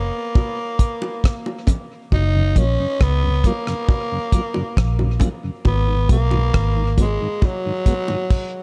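A dark, reverberant production with a dry, up-front low end carries this laid-back roots reggae excerpt in F# major at 68 BPM, opening unaccompanied by chords before moving from F#maj7 to G#m7. A raspy, growling tenor saxophone with light vibrato and tape echo sings the melody over a round, foam-muted electric bass and a damped 70s kit with dark cymbals, tight kick and rim clicks, while low-tuned bongos with hard hands sit quietly in the background. From 2.4 seconds a mellow tonewheel organ adds key click and a slow rotary shimmer to the accompaniment.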